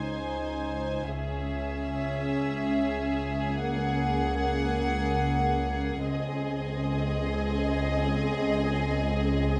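In free time, this eerie, mysterious suspense cue from a film score unfolds over a C# pedal: a floating violin section carries the soft-attack melody sul tasto, while a second, more distant violin section holds a rich inner line above dark, intimate violas with light vibrato. Cellos and double basses sustain a low C#2 together beneath shifting harmonies that move through C#m and F#add9/C# before returning to G#/C#. At 6.0 s a faint, pure violin texture enters high in the background, and the strings ring in a moderate recital-hall reverb until the cue is cut at 9.6 s.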